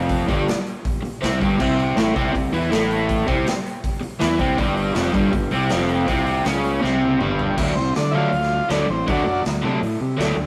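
A rough rehearsal-room recording with warm saturation captures a swaggering, rowdy garage rock passage at 160 BPM, where a crunchy, double-tracked overdriven guitar riff with spring reverb sits up front over a round fuzz bass and a gritty drum kit with a punchy kick in a bright stone room, whose fill at 6.8 seconds leads into a new section before a buzzy vintage combo organ with light vibrato takes the melody from 7.8 seconds.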